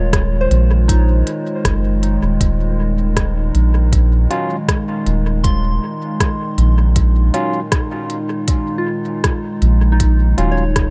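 A deep, round sub bass sits up front in this ambient dub piece, its soft triangle-and-square tone holding low sustained notes with a fast attack. Around it, a warbling, nostalgic tape-like pad holds dark, lo-fi chords on an Eb7sus2 harmony, softened by chorus and its own reverb. A soft, pure FM synth bell traces gentle arpeggios higher up, its decaying notes colored by chorus, phaser and dub echo. From 0.1 s a soft electronic kick and a crisp electronic kit with hi-hat and rim click carry a straight 4/4 pulse, the kit's hits trailing dub echo and both re-recorded in a small room. At 4.3 s a barky, overdriven tine electric piano adds gritty stabs through a combo amp and dub echo, dropping out at 10.6 s. The mood is deep and spacious, with little room reverb in the overall sound, and the passage is cut from a longer piece.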